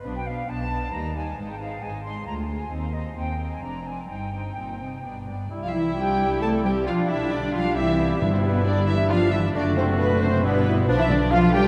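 A bright, airy flute section, close-miked and with vibrato, adds a second line high in this lively, graceful movement in triple time from a classical-period symphony, cut from a longer piece. Muted violin sections carry the melody and another second line with a veiled, dark, con sordino tone, while muted violas, cellos and double basses fill in the accompaniment and bass with dark, bowed tones. At 5.5 seconds the passage repeats with fuller colour: a warm solo oboe and a clarinet add second lines, a mellow bassoon joins the accompaniment, and a French horn section holds sustained chords in the background. Timpani with medium mallets sound a brief accent at 8.2 seconds. A huge, echoing reverb places the whole orchestra in a vast space, softening its edges into a distant, graceful glow.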